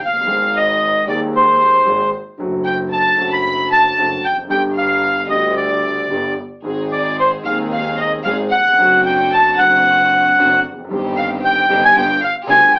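A dramatic, melancholic tango at 113 BPM in 4/4, played with a rubato feel and cut from a longer piece. A reedy, dark bandoneon carries the melody up front, its vintage, band-limited tone setting the character, while a soft-attack violin section plays sul tasto in the background on a pure, floating second line in the same high register. A warm concert grand piano supplies accompaniment with deep bass and long sustain, and a smooth, boxy double bass, bowed by one player with vibrato, anchors the low end. At 6.6 seconds a lush, biting string section joins with bowed stabs in the background. The harmony moves through Ab, D7/F# and G, returning to Ab and D7/F# before Cm/G and a closing G7, and the band sounds as if playing live in one room, wrapped in wet ambience with an AM radio coloring.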